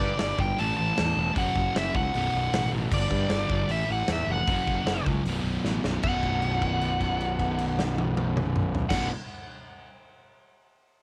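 This short hard rock clip opens at once on a heavy, driving full band in B minor at 154 BPM: a nasal, picked lead guitar with a parked wah carries the melody over a dark, sludgy double-tracked rhythm guitar and a very quiet, bright, crunchy second guitar playing the riff. Underneath, a fuzz-drenched fingered bass sits up front with a growly, punchy bite, and a big acoustic drum kit arrives at 0.2 seconds with a punchy kick, a medium-tuned snare, toms, hi-hat and bright crash cymbals ringing in a big room. The opening stretch cycles through G5, A5, F#5 and B5 chords, the lead guitar's overdrive colored by cassette tape and tape echo. A drum fill at 5.7 seconds pushes into a new section at 6.0 seconds, where the band lands on B minor and a note is held until 8.9 seconds. The sound is dry, a home recording on cassette, and the clip is cut from a longer piece.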